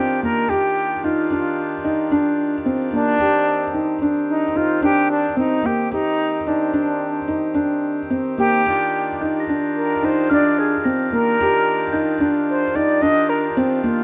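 A pure, straight-toned concert flute carries the melody up front in this hopeful, restless excerpt of contemporary chamber music in 5/4 at 110 BPM in Eb major, over mellow, dark arpeggios from a felt-muted upright piano with audible action noise, breathing sustained chords from a reedy, nasal hand-pumped harmonium, and a soft, bell-like glockenspiel played with rubber mallets that adds a dry, ringing texture in the background from 9.2 to 13.0 seconds, in a lightly reverberant, closely miked recording as the harmony moves from Ebmaj9 to Cm/Eb and back.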